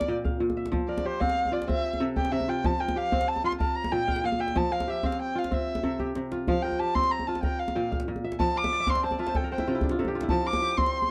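A dark production with light reverb frames this hypnotic, flowing excerpt of West African string and xylophone music in 12/8 at 125 BPM in F major, with a bowed erhu carrying the melody throughout as a solo, its woody, smooth-topped tone shaded by vibrato and portamento. Up front beside it, a crisp, ringing kora fingerpicks arpeggios across a broad range, adding a fill from 8.6 to 10.3 seconds. A deep, small-room djembe struck with hard hands supports the pair, breaking into a fill at 5.8 seconds.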